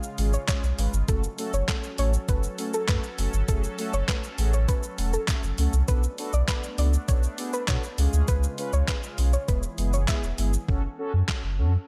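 A detuned 8-bit drum machine drives this energetic, bittersweet dance-pop excerpt, its overdriven kit of thumpy kick, medium-tuned snare, handclaps, hi-hat and shaker sitting up front with a sampler-style grit. Beneath it, a deep, round sine sub bass with a fast attack holds long notes and pumps with sidechain compression, entering at 0.2 seconds. A mellow synth brass built from sawtooth waves gives a dark, brassy accompaniment with a filter sweep, chorus and slapback echo. A sweeping resonant pad supplies sustained, detuned chords that swell in slowly and ring out bright, dropping out at 10.7 seconds. On top, a soft pluck carries the melody with a gentle, short-decaying tone thickened by a sub octave, chorus and digital delay. The drop runs through most of the passage over a progression moving from C# to F# minor, then through Bm7, C# and E before returning to F# minor, all wrapped in a digital ambience.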